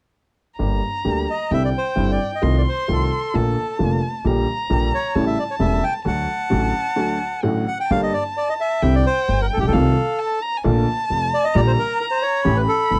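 Tango in G minor at 132 BPM with a rubato feel, dramatic and passionate, cut from a longer piece. A reedy bandoneon carries the melody from 1.3 seconds, over a clear, vintage upright piano with long sustain and a woody, pizzicato upright bass on steel strings, both up front, while one dark, bowed violin adds an expressive second line with vibrato and portamento. The harmony moves from Gm through Cadd9, F7/C and Bbmaj7 to A7 and D before the progression returns at 7.9 seconds, all in a dry, close 1970s-style studio sound with light reverb.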